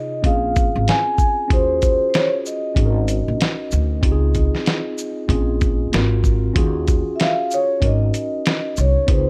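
A ringing, metallic vibraphone played with soft mallets carries the melody, its slow motor vibrato and slapback echo floating over a clean electric piano in this smoky, mellow jazz-hop excerpt at 95 BPM, swung in Eb dorian through chords like Bbm9, Ebm11 and Dbmaj9. At 0.2 s a woody, growly pizzicato upright bass and a compressed, muffled lo-fi drum kit with a thumpy kick, fat snare, hi-hat and shaker join up front, all set in a digital ambience. The vibraphone takes a solo from 6.6 s as the piece is cut from a longer whole.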